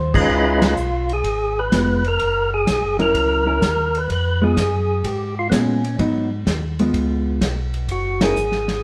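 Heard as a band playing live in one room with moderate large studio reverb, this greasy, soulful soul jazz organ trio excerpt swings at 126 BPM in 4/4 in Db mixolydian: a fat, percussive tonewheel organ with key click and a slow rotary speaker carries the up-front melody, a mellow, round tonewheel organ, also through a slow rotary speaker, plays the bass, a clean, compressed, fingered hollow-body jazz guitar comps close up, and a smooth soul drum kit with a tight kick and dark cymbals keeps time, with band accents striking at 0.5 and 8.1 seconds.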